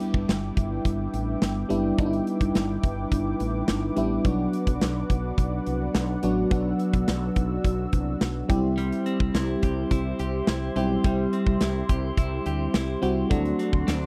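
Uplifting and nostalgic, this short cut from a longer 1980s-style pop piece moves with a straight, steady 4/4 pulse through a G6, Bm, C and D7 progression. A big rock drum kit sits up front, its punchy kick, medium-tuned snare and hi-hat ringing in an acoustic studio room. The FM electric piano, layered with a soft pad, also sits forward, its dreamy, fast-attack tones decaying under a lush chorus. Above it, a smooth sawtooth analog pad holds detuned, softly blooming chords, while a woody fretless bass adds a dark, growly, round low end through analog chorus. At 8.8 seconds a clean, picked electric guitar enters with a compressed riff, touched by subtle chorus and slapback echo. The dry, close production and light reverb give it the feel of a 1970s-style studio recording.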